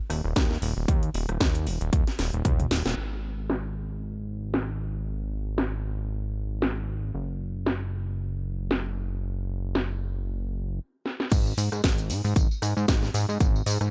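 A dry, gritty recording with little reverb frames this short cut from a sensual, cosmic nu-disco track at 115 BPM in 4/4, its sixteenths lightly swung. A fat analog bass carries the low end throughout: a thick, detuned sawtooth with a fast attack, sustained notes and an evolving filter sweep. A house drum kit with a cracking snare, metallic hats, rim click, tambourine, toms and crash cymbal runs the whole way, low-pass filtered across its hats, snare, toms, cymbals, percussion and room, with a tape-warm, small-room character. A punchy electronic kick drum joins at 0.4 seconds, drops out at 2.6 seconds around a drum fill and band accent, then returns for the drop at 11.3 seconds. Every part sits up front in a close, tightly layered, produced mix.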